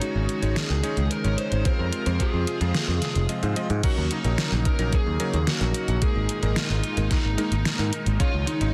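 A dense, heavily limited mix with light digital reverb carries this moody, nocturnal synthwave excerpt at 110 BPM in Eb dorian, where a dark, overdriven picked lead guitar with delay sings the melody over a swirling, detuned analog pad pumping with sidechain, clangy chorused stabs from a bright electric grand piano, an overdriven layered pop kit with a deep snare, a punchy tube-saturated picked bass entering at 0.2 seconds, and a thumpy, tape-warm electronic kick up front from 1.7 seconds, as the chords move from Dbsus2 through Fm and Ebm7 to Absus2.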